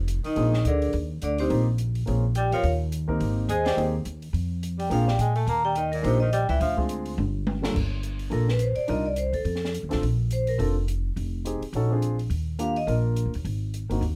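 A ringing, metallic vibraphone carries the melody in this moody, smoky slice of small-group swing and bop, struck with medium hard mallets and played with its motor off in a boxy small-room sound. Beneath it, a pizzicato upright bass with steel strings sits up front, woody and warm. The open jazz drum kit swings with crash cymbal, hi-hat, toms, a high-tuned snare and a boomy kick, adding a short fill from 7.2 seconds. A vintage-sounding tenor saxophone with soft attack and vibrato plays a low second line until 6.8 seconds, while a natural, warm baby grand piano fills in the harmony throughout. The chords move through rich seventh, ninth and eleventh shapes, and the whole excerpt is set in light reverb.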